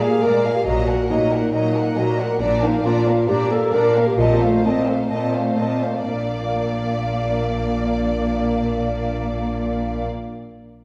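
A quick classical-period orchestral movement, spirited and graceful, with a rubato feel that slows down between 1.5 and 6.1 seconds before a new section begins. A dark, woody violin section carries the melody while a mellow solo clarinet and a second violin section with expressive portamento supply second lines, over smooth, lush violas and a rich, intense cello section up front; soft-edged double basses join at 0.7 seconds. The orchestra is heard from further back in a recital hall with wet reverb.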